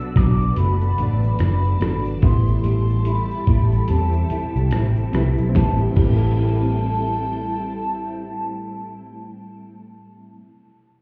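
Hazy and lonely, this swung indie and bedroom pop cut from a longer piece drifts at 72 BPM in A dorian, moving from Bm7 to Am7 as a hollow, woody clarinet-like synth lead carries the melody with subtle chorus and tape echo. Gritty, up-front sampler-style drums with a thumpy kick and fat snare stop at 6.2 seconds, while a round, foam-muted picked bass enters at 0.2 seconds and holds the low end. A dark, slightly broken-up guitar through a small old amp, a reedy electric piano in the background and a swirling phased string machine fill out the sound, which is heard muffled through a wall in a stone room.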